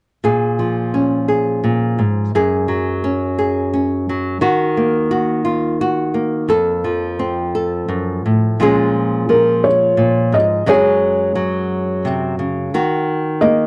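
A fingerpicked nylon-string guitar opens this melancholic, heartbroken folk fragment in 3/4, cycling through Bbm7, Gbsus2, Ebm and F, before a dark, boxy felt-muted upright piano with audible action noise enters at 9.3 seconds to carry an intimate melody, both parts sitting up front in a dry, close 1970s-style studio sound touched by light small-room reverb.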